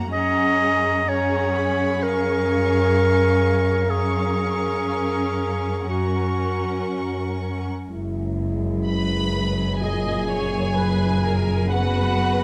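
A clear, up-front solo clarinet carries a second line over distant, rich violins, expressive violas and a focused cello section holding F#2 in this hopeful, uplifting cinematic orchestral cue at a rubato 63 BPM in F# major; once the clarinet ends at 7.4 s, dark, roomy French horns and a bowed double bass section enter at 7.9 s, and a smooth violin melody joins at 8.9 s, all set in light reverb.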